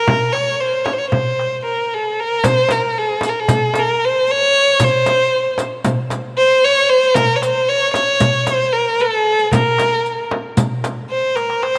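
A single bowed violin opens this stately Turkish makam ensemble piece in 9/8, sitting up front with a warm, expressive tone, soft attack, vibrato and portamento, joined almost at once by a crisp metal-shelled darbuka played with soft hands and a small, bright frame drum, both close and dry. At 2.4 seconds a new section begins as the riq adds its jingles, and a drum fill at 11.4 seconds closes this passage cut from a longer piece. A moderate plate reverb lends the room a gentle bloom.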